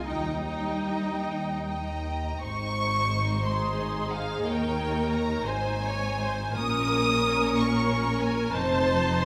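A 6/8 pulse moves with a free, rubato give-and-take in this slow, romantic movement for string orchestra, cut from a longer piece and carrying a solemn, yearning mood. The first violins sing the melody high in their range, bowed with intense vibrato and a clear, lush tone that sits up front yet keeps a distant, hall-like sheen. A second violin line runs beneath in the same clear, intense colour, while the violas supply a smooth, even accompaniment of rich, vibrant sound. The cellos anchor the bass with a focused, close presence, joined at 0.1 s by the double basses, whose bowing carries light vibrato and a clear, intense edge. The harmony opens on Eb, settles into Ab at 2.4 s as the music moves into a new section, and later passes through Eb7, Bbm and F7. Moderate concert hall reverb gives the ensemble a spacious glow.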